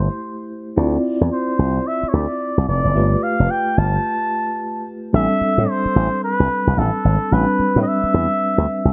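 A cup-muted trumpet with a soft, veiled tone carries the melody in a jazz style, scooping into its notes up front, over a mellow tine electric piano heard as through built-in speakers and a punchy slap bass shaped by an envelope filter. This confident, bouncy new jack swing groove has a swung sixteenth-note feel, moving through minor seventh and ninth chords, with a break at 4.0 seconds before a new section begins at 5.1 seconds. The production is dark, with light reverb and a small-room ambience, and the clip is cut from a longer piece.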